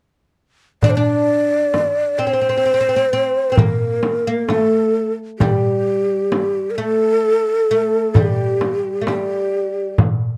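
At 0.8 s a breathy, hollow ney with vibrato enters up front with the melody, while a plectrum-plucked oud with a woody, deep tone carries a second line beneath it, all in a hypnotic, soulful Turkish makam style in 10/8. A crisp metal-shell darbuka and a small, bright frame drum, both played with soft hands, keep the percussion going until 10.2 s. The recording is dry and close in a 1970s studio manner, and this passage is cut from a longer piece.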